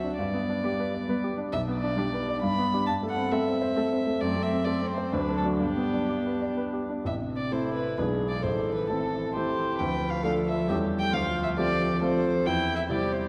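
Set in the wet bloom of a concert hall with a 2.5-second reverb tail, this dark, warm-toned recording presents a lively, cheerful classical-period movement for piano quartet, cut from a longer piece and moving at a quick 134 BPM in 3/4 with a rubato feel. Up front, a single bowed violin carries the melody with a soft attack, played sul tasto, its tone pure and floating with a smooth top. Beside it, a clear, slightly worn baby grand piano sits present in the mix as accompaniment, joined by a rich, pure viola, also bowed sul tasto with a soft attack. In the background, a dark, woody cello supplies a second line with vibrato and a close, sul tasto sound, stopping just before the other parts at 13.2 seconds. The music opens in G major and turns to A minor at 7.1 seconds, passing through chords such as Am, E7/B and Dm before settling on C/E.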